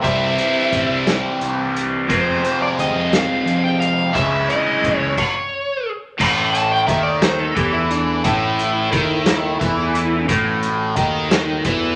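A bright, double-tracked stack guitar riff with overdrive and phaser drives this dark, mysterious psychedelic rock excerpt at 58 BPM in 6/8. It sits over a round, overdriven fingered bass, a punchy vintage kit with dark cymbals in a pumping small room, and a reedy combo organ holding chords in the background through spring reverb. A distorted fuzz lead guitar carries the melody over C, Fmadd9 and C#m until a stop at 5.2 seconds, then a lead guitar solo takes over at 6.2 seconds on A minor, all set in a moderate large studio reverb with a subdued top end.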